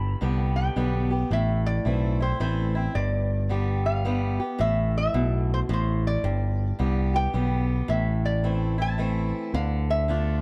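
Honky-tonk and classic country in a lonesome, heartbroken A minor 3/4 at 109 BPM with a swung feel, where a very quiet, clean pedal steel guitar sounds a brief opening note before a metallic, nasal lap resonator guitar enters at 0.6 seconds and takes a slide solo with a steel bar from 1.3 seconds, over an up-front, boxy acoustic guitar with fresh strings picking swing-style accompaniment and a bright, direct picked electric bass, all in a dark, dry production cut from a longer piece.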